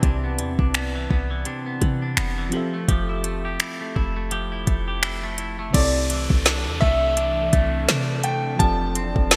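A gated-reverb drum kit sits up front in this smooth, romantic contemporary R&B excerpt, its soft kick, woody snare, metallic hi-hats, finger snaps and crash cymbal riding a swung sixteenth-note feel. Beneath it, a deep, boomy 808-style bass with a sine-like tone anchors the groove, while a dark, round FM electric piano treated with chorus and phaser supplies soft chords. A clean, twangy electric guitar plays compressed, picked arpeggios bathed in lush chorus throughout. At 5.7 seconds a clear concert grand piano enters with a high melody trailed by digital delay, joined by an electronic downlifter effect, and at 6.7 seconds an ethereal, airy pad with slow attack and sidechain pumping settles into the background. The harmony moves through rich major-ninth and sixth chords, all wrapped in a lush hall reverb and a bright, 1980s-style digital sheen.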